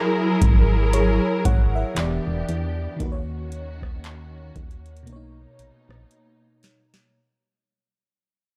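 A slow contemporary R&B fragment in B major at 58 BPM, with a swung sixteenth-note feel and a romantic, dreamy mood, lifted from a longer piece and fading out across its whole length. An FM electric piano layered with a soft pad opens at 0.0 seconds, lush and detuned with a touch of chorus, while a muted studio string section plays sustained, veiled chords con sordino, its bowed tone dark and lightly vibrato-tinged, pumping under sidechain compression. At 0.4 seconds a booming analog drum machine arrives with a deep kick, rim clicks and a crisp snare, handclaps and metallic hi-hats, the snare, claps and hats set in a short room, alongside a punchy, round FM bass that stays low and mellow. The harmony drifts from F#9 through Em7 and D#m7 to a Bmaj9, and a drum fill from 6.1 seconds closes the fragment. The production is dark and warm with digital ambience, and the drums, bass and strings sit up front.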